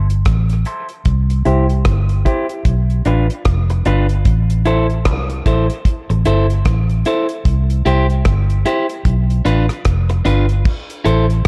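Dub reggae in A minor at 75 BPM with a swung, hypnotic, deep feel, this short cut from a longer piece sets a round, foam-muted vintage bass up front against a damped 70s kit with a tight kick, rim click, hi-hat and crash, while a picked, slightly broken-up electric guitar runs through a filter sweep and dub echo over an Am, C and Bdim progression, all in a dark production with light small-room reverb.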